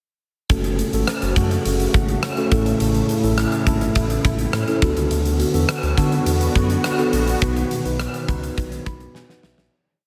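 A huge arena drum kit with a punchy kick and big backbeat sits up front in this uplifting, romantic 1980s-style pop piece at 104 BPM, alongside a smooth synth bass playing a syncopated pop-funk line with chromatic approach notes, a mellow tine electric piano through phaser playing close-voiced syncopated chords with grace notes, and an airy, detuned resonant pad with chorus, all moving through F#m, A, D6 and B before a fade-out from 7.4 seconds that closes on an electric piano fill and a drum fill.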